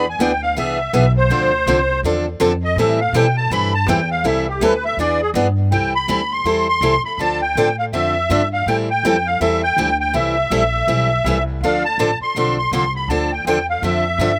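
Acoustic string swing in A minor at 163 BPM, bittersweet and virtuosic, with a reedy, shimmering musette accordion up front soloing through the opening 5.7 seconds over a bright, boxy parlour guitar with slapback echo and a woody, thumpy pizzicato upright bass on gut strings, all captured dry in an outdoor setting as chords like E7#9 and Dm9 colour the brief cut from a longer piece.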